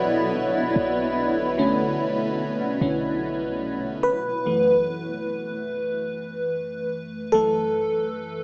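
Heard as if through an AM radio, this short excerpt of contemporary R&B sits in a moderate, digital-sounding stage reverb, giving a sensual, moody atmosphere with a light swing. Up front, an FM electric piano layered with a soft pad plays lush, dreamy accompaniment, its fast-attack, decaying tones coloured by chorus and phaser. Through the first 4.0 seconds, a granular cloud pad holds blurred, evolving chords that bloom slowly and fade on a long release, bathed in its own reverb. Beneath them, a clean 808-style bass adds a deep, boomy, dark sine-like note. The harmony moves from Bm7 to F#m7 at 4.0 seconds, where the electric piano carries on alone until 8.4 seconds.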